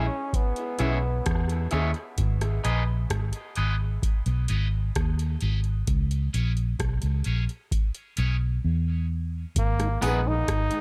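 A brilliant, punchy trombone phrase opens this spacious, meditative dub reggae excerpt over a twangy, slightly broken-up electric guitar, a dark, boxy grand piano stab and a round, foam-muted electric bass. Dub echo trails the trombone, guitar and piano as a filter sweep runs through the opening, while a booming analog drum machine with a deep kick, metallic hats and rim click sits up front beside the bass before falling silent from 8.6 to 9.6 seconds. The trombone returns at 9.6 seconds, and a clean tonewheel organ with slow rotary and key click then slips into the background along with a brief, saturated tambourine and woodblock, framed by a light studio reverb.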